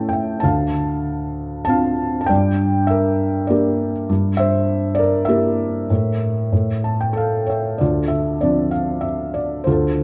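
A soft, intimate felt-muted upright piano plays alone, up front with its action noise audible, in this cool, moody lyrical classical piece in a rubato 3/4, moving through Dm7, Gm, Edim/G and A5 before a brief fill from 6.5 to 7.8 seconds leads back to Dm7 and a new section, all set in a moderate concert-hall reverb with a dark production, heard as an excerpt from a longer work.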